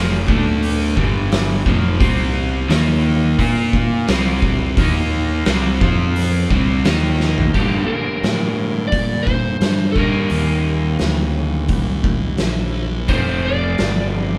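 Brooding and gritty, this blues rock and southern rock power trio excerpt opens with a crunchy, double-tracked overdriven guitar riff over fuzz-soaked, round fingered bass and an oversized, low-tuned drum kit with a fat snare, punchy kick and saturated, rolled-off top, all set up front with light reverb as the band plays live in one room. After a drum fill at 7.2 seconds, an overdriven slide guitar played with fingerpicks enters at 7.5 seconds with a warm melody over chords moving from Gm to Eb to F.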